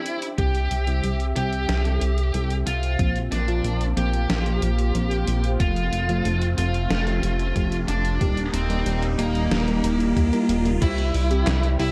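Synthwave at 92 BPM in a straight 4/4, this short cut from a longer piece feels nostalgic and uplifting, set in a dark production with light reverb and digital ambience. A bright, distorted high-gain lead guitar carries the melody up front, coloured by tape echo, while a thick, detuned sawtooth pad with chorus holds sustained chords beneath it. A gated 80s drum machine of snare, handclaps, hi-hat and crash steeped in gated reverb enters at 0.1 seconds, and as the brief break ends, a saturated, glossy synth bass and a thumpy, tape-warm electronic kick arrive at 0.4 seconds. In the background, a dreamy FM electric piano with a soft pad layer plays stabs through chorus, phaser and a cassette tape tone, its filter sweeping across the passage as the chords move from C through Bbsus2 and F to Eb. A riser builds from 4.8 seconds, and at 10.8 seconds the harmony returns to C as a very quiet, pure synth bell adds a gentle second line on E4.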